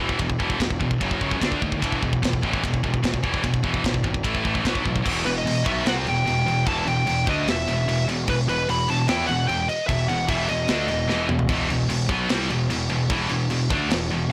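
At a straight 149 BPM in 4/4, this relentless, epic heavy metal excerpt in E minor drives two bright, scooped high-gain rhythm guitars with a growly fuzz bass under an up-front, tight acoustic drum kit with a rolled-off top. It drops into half time at 5.0 seconds, and a dark, distorted lead guitar with digital delay enters at 5.3 seconds to carry the melody until 11.2 seconds, just as a short drum fill begins, all within a dry, blown-out, overdriven recording.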